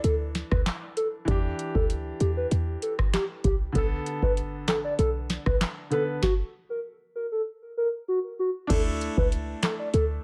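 A hollow, woody synth lead with chorus and tape echo carries the melody over a clear grand piano pumping against the beat, a punchy, tight 808-style bass and a booming drum machine with a deep kick, metallic hats and 12-bit grit, opening this sultry, bouncy dancehall excerpt, which halts for a stop from 6.2 to 8.7 seconds before returning on a Dsus2 chord.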